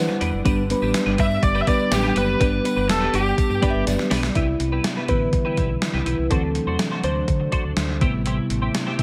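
Lightly reverberant and glossy, this nostalgic 1980s-style pop excerpt moves at 123 BPM in G major, driven by an up-front gated digital drum machine with a thumpy kick and gated-reverb snare, a round fingered electric bass, a shimmering pulse-width pad in the background, and a bright, compressed twelve-string electric guitar riff with chorus and delay. A soft, pure synth bell with phaser adds a second line, a jingly tambourine sits behind the drums until 4.2 seconds, and an overdriven, biting lead guitar carries a short melody from 1.2 seconds. After a drum fill, the mellow, dark-toned FM electric piano takes a solo from 4.4 seconds over Cmaj7, D7 and Am7 chords.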